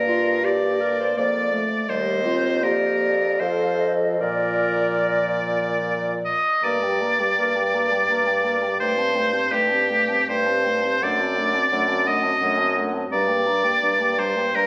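Captured on a phone in a studio room, with moderate stage reverb and compression, this fragment of a slow, serene and tender romantic movement for wind quintet sways in a rubato 3/4. A hollow, airy flute with vibrato carries the melody from the background while a bright oboe sings the second line up front, and a warm bassoon holds the bass under a mellow, vintage-toned French horn and a punchy clarinet that enters at 0.1 s. The opening section gives way to a second section at 6.6 s.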